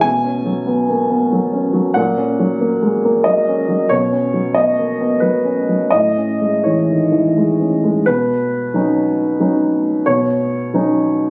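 A rubato 3/4 lilt at 91 BPM carries this intimate, hopeful fragment of neoclassical minimalist piano in B major, tuned to A4 = 437 Hz, where a solo upright piano, woody and up front, moves from Bsus2 through F#/A# and Badd9 to Amaj7 before a new section opens on Badd9 at 8.1 s, the sound caught on a phone in the room with light club reverb and compression.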